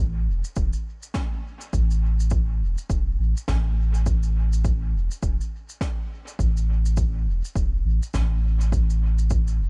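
A soft, round dub sub bass sits up front from the first moment, its deep triangle-and-square tone sustained low in the register through this hazy ambient dub fragment at 103 BPM in 4/4, with a 16th-note swing. A punchy, layered electronic kick with overdrive enters at 0.6 seconds, while a brushed, medium-tuned acoustic snare and shaker, set further back in a studio room, ring through a dub echo. The overall sound is dry and close, with little reverb, giving the deep groove an intimate, smoky weight.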